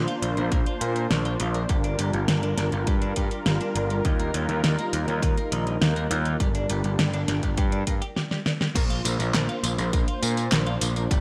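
A detuned sawtooth pad with chorus and a growly, overdriven picked electric bass open this cinematic, nocturnal synthwave excerpt at 102 BPM, both pumping with sidechain, as a pop drum kit with fat snare, metallic hats, handclaps, tambourine and crash cymbal arrives at 0.1 s alongside a clean, twangy twelve-string electric guitar riff set back under subtle chorus and delay, before a punchy electronic kick joins up front at 0.5 s and a drum fill at 8.2 s carries the Bbadd9, Gm7, Ebadd9, Gm7 progression back to Bbadd9 for a new section, framed by bright 1980s-style digital production and light reverb.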